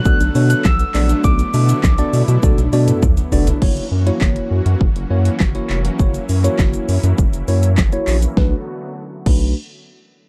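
A gentle, round FM synth lead and a lush, detuned supersaw pad open this energetic, confident dance-pop excerpt in B minor at 101 BPM, joined at once by a clean tine electric piano, a very quiet crystalline wavetable pluck playing arpeggios, a deep, up-front analog bass and a punchy, overdriven pop drum kit with fat snare and metallic hats; the lead stops at 3.0 seconds, and a drum fill gives way at 3.6 seconds to a filter sweep over pumping pad, piano and bass in a dark, dry mix.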